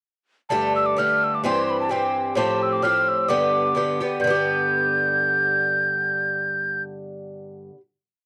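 A metal whistle leads this short, complete Celtic polka. Its airy, hollow tone is softened by rolled-off highs, and tongued notes with a touch of chiff and gentle vibrato shape a motif-based melody built in period phrases. Beneath it, an Irish bouzouki sits up front, its picked double strings giving a bright, metallic ring as it strums eighths in open chord shapes. The mood is cheerful, in 2/4 with a light swing on the eighth notes. After one pass through the main theme, the pair arrive on a final chord at 4.2 seconds; the whistle stops at 6.8 seconds, and the bouzouki rings on alone until 7.8 seconds. The sound is dry and close, in the manner of a 1970s studio recording, with light reverb.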